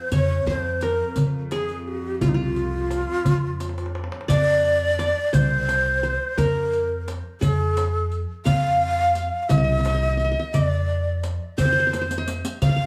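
This excerpt of Arabic maqam ensemble music moves at a stately, festive 58 BPM, counted in dotted quarters in a straight 6/8, and is tuned to A4 = 438 Hz. It opens in F maqam bayati and turns to F maqam rast at 4.3 s. An end-blown reed ney carries the melody up front, breathy and bright with vibrato, a crisp attack and an unsteady, tape-echoed tone, while a mellow, plectrum-plucked qanun with triple strings adds a second line just behind it. A warm chamber cello section sustains a bowed drone on F2 in the background until 4.4 s, and an upright bass played pizzicato on gut strings sits forward in the mix, woody and thumpy. A small clay-shell darbuka struck with soft hands sets the pulse alongside a close, dry riq with dusky jingles, and drum fills arrive at 3.6 s and near the end. The ensemble sits in a small room with moderate studio reverb.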